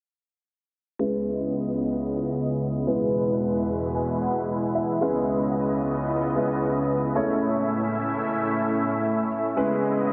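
Driving and energetic, this pop excerpt moves at 112 BPM in a straight 4/4 feel, set in C# minor with tuning at A4 = 442 Hz. A clear grand piano carries the accompaniment, sounding intimate and natural up front, with its action noise audible and a touch of analog chorus and low-pass filtering on its tone. Beside it, a filtered supersaw swell holds sustained chords across a low-to-high span, its detuned sawtooth unison voices rising in with a slow attack and evolving over time. A filter sweep runs through the whole passage from 1.0 to 10.1 seconds, and the piano breaks into a brief fill between 3.7 and 5.3 seconds. The harmony moves from C#m7 to E, back to C#m7, then to A before returning to C#m7. A huge ambient reverb with a 7.6-second decay soaks the mix, giving it a dreamy wash.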